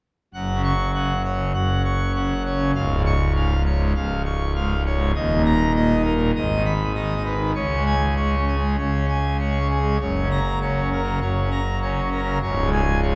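In a straight 4/4 at 100 BPM, this jubilant classical organ toccata in F# major, cut from a longer piece, features a solo pipe organ on full organ with mixtures, its majestic, brilliant registration and romantic voicing set up front and spanning C#1 to C#6 from 0.3 to 13.2 seconds, all bathed in the lingering reverb of a church.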